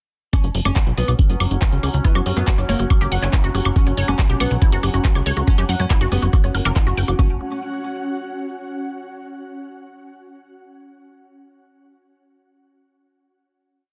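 A dense, heavily limited modern master in digital ambience carries this short, driving psychedelic trance piece at 140 BPM, where a knocking four-on-the-floor electronic kick sits up front beside programmed bright hats, claps and woodblock, and a punchy, funky analog bass rolls in sixteenth notes. A mellow, fretless oud repeats a riff melody in the background through phaser and delay, while a woody wave-folded pluck enters at 2.0 seconds with an accented acid line whose 12-step loop drifts against the bar. Beneath them, a resonant drone with moving overtones and an ethereal, warbling pad with slowly shifting chords pump with the kick, and the pad rings on through the final chord from 7.2 to 8.9 seconds.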